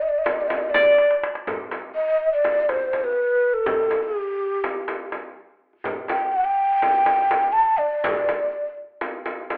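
In a straight 9/8 at 246 eighth-note beats per minute, this passionate, festive Turkish makam ensemble excerpt in D makam hicaz features an up-front, breathy end-blown ney with vibrato carrying the melody, joined at 0.7 s by a brief second line from a bright-edged plucked qanun and an airy concert flute in the background, while a deep clay-shelled darbuka and a small frame drum played with soft hands keep the pulse, adding a drum fill at 1.0 s before the ney falls away at 8.7 s, all heard as a live band in one room with moderate studio reverb and a thin telephone-like sound.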